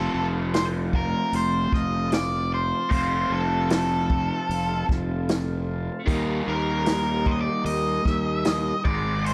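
A straight 4/4 pulse at 76 BPM sets an unhurried, hazy groove, with a vintage acoustic drum kit of hi-hat, punchy kick and medium-tuned snare entering at 0.5 s in a small, natural room with a rolled-off top. Underneath, a fingered electric bass sits up front, overdriven into a growly fuzz, while a double-tracked, crunchy picked guitar plays the riff through a phaser. An octave-fuzz lead guitar carries the melody, dark and distorted with a slapback echo. A mellow tonewheel organ holds round, clean sustained chords in the background, its key click and slow rotary speaker adding a kaleidoscopic shimmer. Cut from a longer psychedelic rock piece in F mixolydian, the passage rests on F before shifting to Eb at 6.1 s, all within light reverb.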